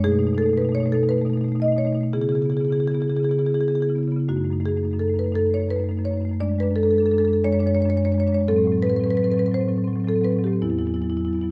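A damp stone room surrounds this recording, its reverb lingering about 1.3 seconds after each note. Within that space sits a solo marimba played with medium mallets, placed up front so its dark, woody bars sound close and smooth. This is a contemporary classical piece for marimba alone, cut from a longer work, and it moves in a flowing, reflective 6/8 with a free, rubato feel. Across the 11.5 seconds the instrument spans E2 to D#5, drifting through B7, C#m7, F#m6 and Dmaj7#11/F# before settling through Am6 onto an open Esus2 at 10.6 seconds.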